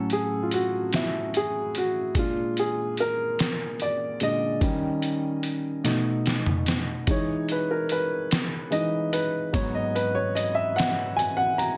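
A woody, vintage upright piano carries the lead throughout this fervent, soulful slow gospel fragment in G# minor, moving at 49 BPM in a straight 6/8 through colorful harmony from A6 to Emaj7 and G#m7, while a gritty, pitched-down trip hop sampler-style drum kit with a thumpy kick, medium-tuned snare, hi-hat and toms sits up front beneath it and breaks into a fill from 5.8 to 7.1 seconds, all wrapped in light reverb and digital ambience within a dense, heavily limited modern master.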